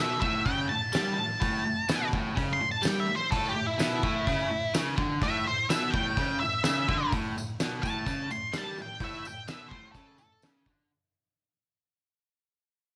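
A small room with light reverb frames this rowdy, swaggering garage rock clip, cut from a longer piece, with the guitars and drums pushed up front. An oversized, low-tuned acoustic drum kit hits hard, its punchy kick and fat snare sounding in a pumping stone room alongside the hi-hat. A double-tracked, overdriven electric guitar picks a bright, low riff in a straight 4/4. Over it, a dark octave-fuzz lead guitar, picked and distorted, takes a solo across the opening 7.1 seconds. A jingly tambourine sits close and dry in the background from 0.9 seconds. From 7.1 seconds the recording fades out.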